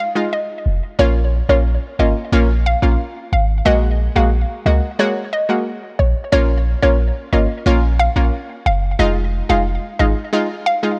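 A hollow, detuned square-wave pluck carries the bouncy melody through chorus and tape echo from the first moment of this hypnotic dancehall excerpt in Bb minor at 90 BPM, joined at 0.2 s by a round, warbling analog sawtooth pluck with a filter sweep on chords moving from Fm7 to Bbm and Gbadd9/Bb, while a deep, boomy 808-style sine bass sits up front from 0.7 s, all set in light digital ambience with a dry, gritty hardware character.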